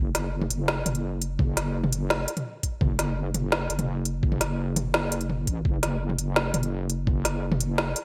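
A half-time 4/4 feel drives this heavy, tense drum and bass fragment, where a deep, mellow wobble bass with chorus sits up front from the start, an overdriven electronic kit with a woody snare, smooth hats and toms rings through gated reverb, and a gritty, pitched-down sampler kick thumps in at 1.4 seconds until 7.1 seconds, set in light reverb with a bright 1980s-style digital sheen.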